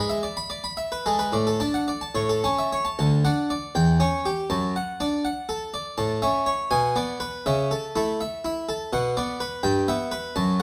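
A solo harpsichord, close-miked, plucked and brilliant with octave strings in the Flemish style, opens this serene, radiant baroque-style suite movement in D major and carries it alone from 0.0 to 10.6 seconds across a range from D2 to B5, moving in a rubato 6/8 at roughly 71-85 dotted-quarter beats per minute with a light touch of reverb in this short cut from a longer piece.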